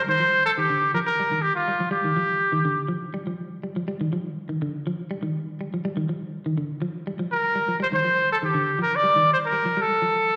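Afrobeat in a driving, intense mood, this straight 4/4 excerpt is cut from a longer piece and sits on an Ebmaj9/D chord throughout. A clear, punchy trumpet carries the melody up front with vibrato and a vintage, pop-style solo voice, playing from 0.0 to 2.9 seconds and returning at 7.3 seconds. Beneath it, a clean electric guitar plays picked arpeggios in a low register from the start until 10.2 seconds, its tone warm and also up front. Both parts carry a slapback echo. The sound is that of a live gig heard through the venue's PA, with a lush recital hall reverb that lingers around the players.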